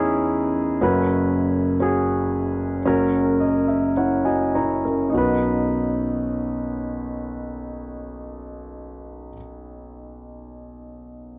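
Pop excerpt in B major at 50-64 BPM, emotional and hopeful, where a lone concert grand piano with intimate tone, deep bass, audible action noise and long sustain plays accompaniment up front in a dry, close 1970s-style studio sound, slowing down through its opening phrase with a fill from 2.8 to 5.1 seconds as the chords move from C#m/E through F#sus4 and F# to land on B at 5.1 seconds.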